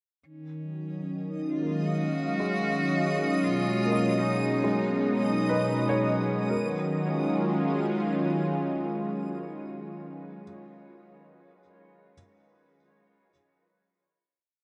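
Drenched in a huge, long-tailed reverb with a softened top end, this serene, melancholic ambient piece at 77 BPM in Eb minor places a smooth, detuned sawtooth pad with chorus up front under a filter sweep. It is joined by a bowed cello's even vibrato melody fading in, a reversed, granular swelling texture holding a bright high note, and a mellow felt-muted upright piano whose four loops of unequal length drift against each other. The piano carries on past the final Ebm11 chord, which arrives at 6.5 seconds, and outlasts the pad until 12.1 seconds.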